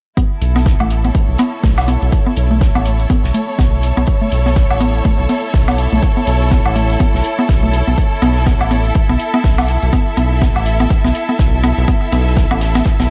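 Hypnotic and cool, this minimal techno excerpt moves at 123 BPM in 4/4 with a 58% swing on the sixteenths, built over a B7(no3) chord. A punchy analog kick drum and a deep, round, sawtooth-and-sine bass with tube saturation sit up front. A woody, warbling FM mallet-like synth pluck carries the riff with chorus, analog delay and a filter sweep, while a clear, bowed chamber string section adds texture, both pumping against the kick. An electronic hi-hat joins in, while a tape-warm woodblock with diffuse ambient delay and a muffled, gritty cloth-damped kit with a fat snare sit in the background, all inside a light small-room reverb.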